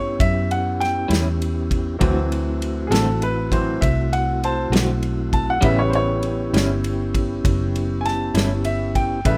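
Opening on a bright, intimate baby grand piano solo with audible action noise over soft, flute-like tonewheel organ chords turning through a slow rotary speaker and a dark, foam-muted electric bass, this laid-back, swaggering slow blues in 12/8 adds a punchy small-room country drum kit of kick, snare and ride at 0.2 seconds and a slightly broken-up guitar with tremolo from 1.1 to 8.5 seconds, moving from A7 to D7 and back in a rough home demo mix cut from a longer piece.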